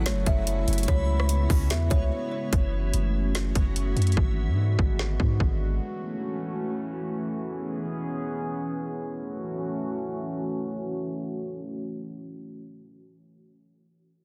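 Atmospheric cloud-rap in F# minor at 146 BPM with a half-time feel, hazy and melancholic, where a warbly, nostalgic lo-fi pad with chorus and reverb holds dark sustained chords until 13.1 seconds over a deep, mellow 808-style bass and an up-front trap kit of hard-clipped kick, woody snare and metallic hats, while a plucked, ringing kalimba melody with digital delay, background fingerpicked Celtic harp arpeggios with delay and a reversed, dreamy granular texture float through the opening seconds, all shaped by a break at 2.1 seconds, a filter sweep from 2.5 seconds and a dense, heavily limited master.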